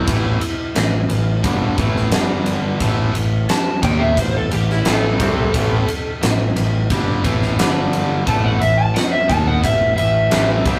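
Raunchy and driving, this short cut from a longer blues rock and southern rock power-trio track rides a straight 4/4 groove, with a dark, overdriven slide guitar carrying the melody over a bright, double-tracked distorted guitar riff and a growling, punchy fingered bass. A huge arena drum kit sits up front with a fat snare, punchy kick and ride cymbal, coming in at 0.1 seconds. The harmony moves between A5 and G5 power chords, and the rough rehearsal-room sound is lifted by moderate studio reverb.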